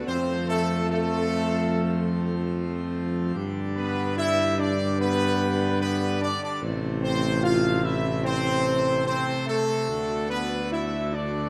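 A majestic full organ, brilliant with mixtures, opens this solemn, regal classical passage at 73 BPM in 4/4 together with a dark, distant French horn section and a mellow, punchy tuba with light vibrato carrying the bass up front, and a clear, vintage-toned trombone section holding sustained chords in the background enters at 0.1 seconds. A bright, tight trumpet section takes the melody from 0.1 seconds over a stately F, G, A minor, D progression. The whole brass-and-organ ensemble sits in a wet recital hall reverb, giving this excerpt from a longer piece a ceremonial grandeur.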